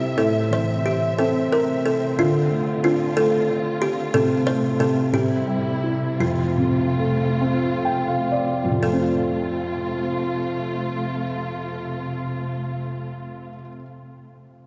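A buzzing, woody kalimba carries the melody up front with bright thumbnail plucks, while a mellow felt-muted upright piano accompanies and a lush, dark symphonic string section holds bowed chords with expressive vibrato. This innocent, tender children's lullaby sways in a rubato 6/8 in F major at roughly 39-62 BPM, and everything rings out in the long, wet reverb of a church or concert hall. The music slows from 4.1 seconds, a soft felt piano fill arrives at 7.4 seconds, and the piano plays alone after the kalimba and strings stop at 13.7 seconds in this fragment cut from a longer piece.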